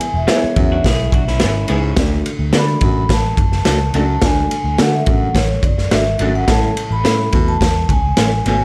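Uptempo 1960s-style soul with a passionate, urgent mood, cut from a longer piece, where a ringing vibraphone with soft mallets and slow motor vibrato carries the melody through a slapback echo, over a dark, woody upright piano, a round, foam-muted picked electric bass and a raw garage drum kit that sits up front with a boomy kick, dark cymbals and a gritty, pumping small-room sound. From 0.3 seconds an electric guitar through a small old amp adds slightly broken-up picked stabs with ensemble chorus in the background, while a clear baritone saxophone enters at 0.6 seconds with a low riff of subtone and scooped notes. A second, lo-fi fingered guitar plays a brief riff until 1.9 seconds. The chords move from E to D at 2 seconds and then to A at 6.5 seconds, and the piano drops out at 7.6 seconds.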